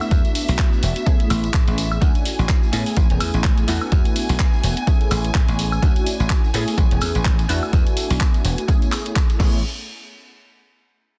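Funky and joyful, this filtered disco house cut opens straight into a drop that runs from the start to 9.6 s, with a swung sixteenth-note feel. An overdriven, punchy electronic kick sits up front beside a bright, dry thumbed slap bass, while a layered house drum kit adds crash cymbal, handclaps, hi-hat, tambourine and woodblock, all pumping against the sidechain. A very quiet separate tambourine part adds a small-room acoustic layer. A detuned sawtooth and pulse-wave polysynth comps through chorus and phaser with a mellow filter pluck, and a clear, focused string section holds bowed chords with vibrato in the background. The harmony cycles through E9sus4, Amaj9 and Dmaj9, and the dense, heavily limited master wraps the whole groove in digital ambience.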